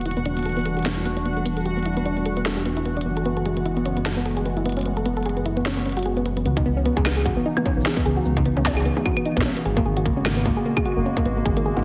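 Swung sixteenths in 4/4 drive this melancholic, glitchy IDM fragment, where an industrial kit of claves, crisp hi-hats, shaker, toms and a clanging snare sits in reverb and digital delay beneath a warbling, lo-fi tape-like pad that pumps against the beat with chorus and 12-bit grit. A soft, round pluck spins arpeggios through tape echo, a filter sweeping over it for the first 6.5 seconds, while a dark, detuned saw bass rumbles below and a bubbling, resonant stepped-filter texture drifts high until 6.5 seconds. A distorted electronic kick enters at 6.6 seconds as minor eleventh chords shift through a heavily compressed, radio-like mix.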